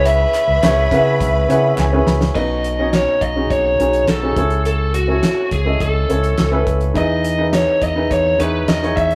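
An overdriven, biting lead guitar carries the melody in this piano-driven pop passage, cut from a longer piece. Its picked tone sits up front, trailed by digital delay. The mood is warm and anthemic, with a straight 4/4 feel. A polished, present grand piano accompanies throughout and adds a fill in the opening bars, while a punchy, amped fingered electric bass sits up front beneath it. A damped 70s drum kit, with fat snare, tight kick, dark cymbals and handclaps, plays a fill just before the second section begins at 2.4 seconds. Early on, a distant, lush violin section bowed with vibrato adds a second line until 2.3 seconds, and crisp group handclaps sit in the background. The rough rehearsal-room sound carries a moderate studio reverb, and the harmony moves from C#m7 through Badd9 and A/C# to Emaj7.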